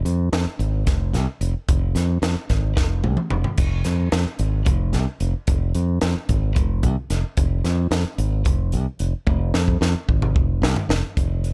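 A bright, direct fingered electric bass sits up front, moving between F1 and F2 in a funky, nocturnal electric jazz fusion groove in 7/8, driven by a crisp acoustic drum kit with a punchy kick, high-tuned snare, hi-hat, crash and toms, whose gritty saturation and pumping small-room sound push forward in a dry mix, with drum fills arriving at 2.8 s and 9.3 s in this short cut from a longer piece.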